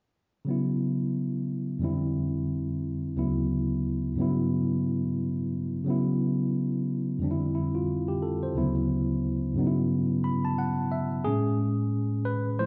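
Swung sixteenths in 4/4 carry this soulful R&B fragment, cut from a longer piece, where a lone tine electric piano, bright and clean and heard up front through its built-in speakers, ranges from low bass to high treble across sus and major-seventh chords, adds a fill at 9.9 seconds and then takes a solo over a final Amaj7 at 11.3 seconds, all bathed in the wet reverb of a recital hall with a dulled upper register.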